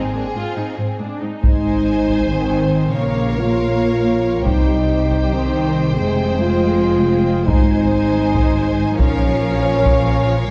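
Opening on bowed strings, this adventurous, majestic cinematic excerpt in an uneven seven-beat metre sets a focused, close violin melody over lush, distant second violins and violas, expressive double basses and a soft-attack cello section, until at 1.4 seconds mellow French horns bring sustained chords and a close, dry taiko ensemble comes in with heavy sticks, all bathed in a dark scoring-stage reverb.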